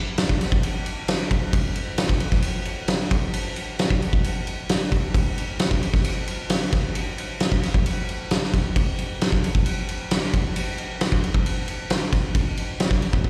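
A straight 4/4 rock pulse at 133 BPM drives this short cut from a longer piece, carried entirely by a loose indie drum kit that comes in at 0.2 seconds and plays through to 13.3 seconds. The kick, snare and ride cymbal give the passage a restless, wistful mood. The kick is punchy, the snare is medium-tuned, and the ride cymbal has a dark character, all from an acoustic kit with a roomy feel. The drums sit up front in the mix, touched with light reverb. The sound comes from a live gig heard through the venue's PA, with the lingering air of a recital hall around the playing.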